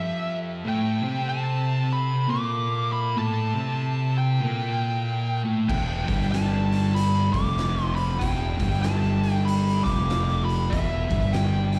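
Heard through a live venue's PA with recital-hall reverb, this sludgy, heavy stoner and doom metal excerpt opens with a compressed fuzz lead guitar carrying the melody over two distorted, picked fuzz guitars playing a riff in the background and a very quiet, eerie metallic drone holding sustained chords, until at 5.7 s a growly, up-front fingered electric bass and an oversized low-tuned drum kit with a boomy kick, fat snare and dark cymbals join in.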